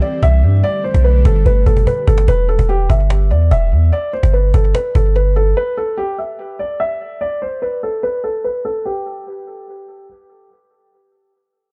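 A dark, boxy grand piano carries the melody through tape echo from the start, over a breathy, detuned pad that drops out at 2.3 seconds and a woody, dry cajon roughened with gritty sampler texture and its own tape echo. A deep, sine-toned 808-style bass sits up front beneath the half-time trap groove, and after a short drum fill the bass and cajon drop out at 5.5 seconds, leaving the piano alone under a filter sweep. The wistful, dreamy hip hop fragment has an echo-heavy mix with little reverb and a dull, rolled-off top end.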